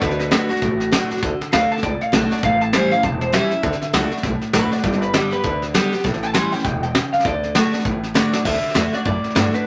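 Upbeat and retro, this brief rockabilly excerpt swings gently in a club room, with a twangy, slightly broken-up electric guitar through a small old amp soloing cleanly over the D, A7 and G changes until 8.5 seconds, a bright, full-bodied picked acoustic guitar up front with audible finger squeak, a woody, thumpy pizzicato upright bass on gut strings, and a soft brush kit with a fat snare and punchy kick that plays a fill at 8.3 seconds.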